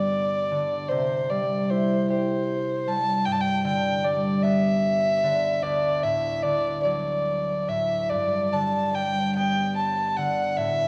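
A moderate concert hall reverb surrounds this short, wistful Celtic slow air cut from a longer piece, where a dark, woody single fiddle carries the pastoral melody up front with light vibrato, portamento and sul tasto bowing over a bright, ringing fingerpicked concert harp, both sounding throughout in a loose, rubato 6/8 that moves through G, C and D.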